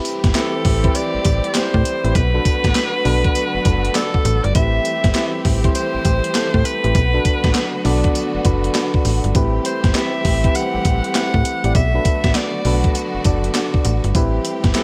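A swung sixteenth-note groove at a mid tempo drives this slick, confident stretch of new jack swing R&B, cut from a longer piece and built on a steady rock between Am7 and Bm7. Up front, an electronic 80s drum machine punches out a thumpy kick, a gated-reverb snare, handclaps, hi-hat and tambourine with a tape-warm, sampler-style edge. A slap-like FM bass enters at 0.2 seconds, snappy and metallic in its attack yet mellow as each note decays. Soft, round electric-piano-like synth keys with chorus comp alongside a lush bowed string section that holds sustained chords with vibrato and a smooth top. From 0.4 seconds a bright, forceful alto saxophone carries the melody in a pop style, sounding distant and roomy with digital delay, while the overall mix stays fairly dry.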